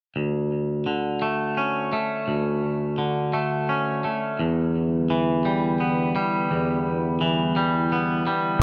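A hopeful, cinematic rock excerpt in 6/8 at 57 BPM, counted in dotted quarters, with a straight feel. A clean, twangy electric guitar sits up front from 0.2 seconds, playing fingered arpeggios through digital delay with a scooped, warm tone. At 4.4 seconds an airy, breathy pad enters in the background, holding soft, full-bodied sustained chords with a slow attack, long release and a shimmer of chorus. The harmony moves from D5 to Em7 as the pad arrives, and both parts carry on to 8.6 seconds. A wet scoring-stage reverb gives the whole passage a spacious, filmic depth.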